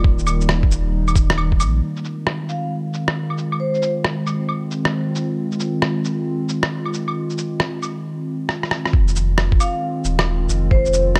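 Muffled, pitched-down shaker, claves and rim click tick up front with a 64% sixteenth-note swing over a thumpy kick and a round, deep sine sub bass in this ghostly, nocturnal future garage piece at 135 BPM in F minor. The kick drops out at 1.6 s and the bass at 1.8 s, and both return after a short drum fill at 8.9 s. Meanwhile, a warbling, detuned, lo-fi pad pumps as it holds chords moving from Eb to Fm7, and a metallic, ringing vibraphone enters at 2.5 s with delayed phrases in a boxy small room, all set in a dark, warm production.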